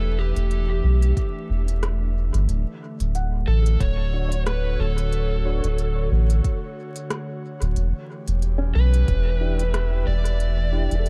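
Hazy and spacious, this 91 BPM ambient dub excerpt drifts over Em7 and Dmaj7 chords with a dark, overdriven slide guitar melody soaked in dub echo, a breathy chorused pad, mellow felt-muted upright piano arpeggios with audible action noise set in the background, and a round, up-front sub bass, while a faint wind-like tuned noise sounds only until 2.5 seconds, crisp hi-hat and rim clicks from a tape-tinged electronic kit enter at 0.4 seconds and are joined by a deep layered kick at 1.2 seconds, and a key-clicking tonewheel organ on slow rotary speaker adds stabs from 4.1 seconds, inside an echo-heavy mix flecked with vinyl crackle.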